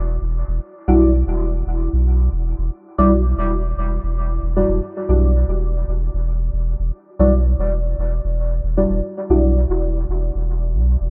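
Nocturnal and hazy, this short dub techno excerpt at 114 BPM in E minor rests on an Em9 chord, with a pure, clean sine sub bass running from the start to 11.1 seconds beneath deep, mellow chord stabs from 0.9 to 9.5 seconds, their soft, detuned, decaying tones smeared by chorus, phaser, cassette tape and dub echo within a light digital ambience.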